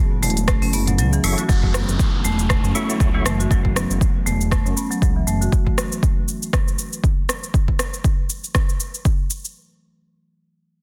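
Afro house at 119 BPM in F# minor with a hypnotic, warm mood, this short cut opens on a moody, full-bodied analog pad holding an F#m7 chord beneath hard-mallet marimba arpeggios, detuned, rumbling saw bass and smooth-hatted deep house drums with rim click, shaker and toms, all over a punchy, up-front electronic kick that drops out at 1.0 seconds, while a mellow tonewheel organ with key click and fast rotary speaker adds stabs from 1.2 seconds, an electronic downlifter falls in at 1.5 seconds, and a filter sweep shades the tape-echoed marimba within a dense, heavily limited master.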